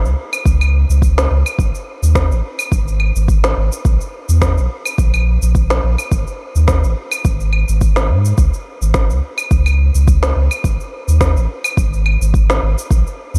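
Organic downtempo with a meditative, earthy mood and a light swing, cut from a longer piece. A round, mellow sine sub bass sits up front from the start with a fast attack and sustained notes, pumping under sidechain, while electronic shaker, claves and a woody snare enter at 0.1 seconds, overdriven and re-recorded in a large room. A deep, overdriven electronic kick joins at 0.5 seconds, and the mix as a whole stays close and dry.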